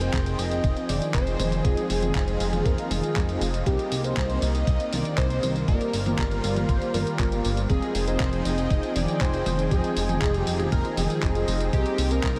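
Bittersweet and nostalgic, this italo disco excerpt at 119 BPM in F dorian sets a bold, detuned sawtooth unison lead with tape echo over a lush, warbling chorused pad, mellow brassy synth stabs tucked in the background, a glossy, nasal synth bass with tube saturation, a thumpy electronic kick and a clean 12-bit drum machine of handclaps, hi-hat, tambourine and toms, as the chords move through Fm7, Cm7 and Gm7 in a dreamy mix soaked in huge ambient reverb.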